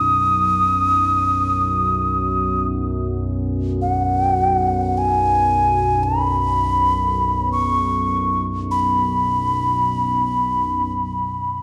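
Floating in free time, this peaceful, spacious excerpt of world meditative music in B major pentatonic sets a breathy, hollow alto ocarina up front, carrying the melody with vibrato and tongued notes over a sustained analog drone built from sawtooth and pulse waves, with pulse-width modulation, a slow attack and chorus. A very quiet bronze singing bowl, struck with a felt mallet, rings with a metallic, slowly beating tone only until 2.9 seconds. The whole recording sits in a wet concert hall reverb and carries the warbly pitch drift of worn old cassette tape.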